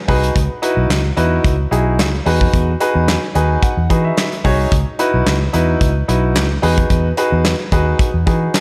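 A light studio reverb gives this short cut from a longer early-eighties boogie funk track a polished, late-night sheen, with all three parts sitting up front. At 110 BPM in a straight 4/4 and in C# minor, the groove runs from 0.1 seconds to about 8.6 seconds, moving between C#m11 and Emaj9 chords. A clear concert grand piano carries the accompaniment in an intimate, present tone, its action noise audible and its long sustain colored by a slapback echo, and it steps forward with a fill between 3.1 and 4.7 seconds. Underneath, a vintage muted fingered electric bass adds a dark, round, punchy line with an amped, foam-muted character. A modern studio drum kit in an airy small room supplies handclaps, hi-hat, a medium-tuned snare and a tight kick, keeping the feel funky.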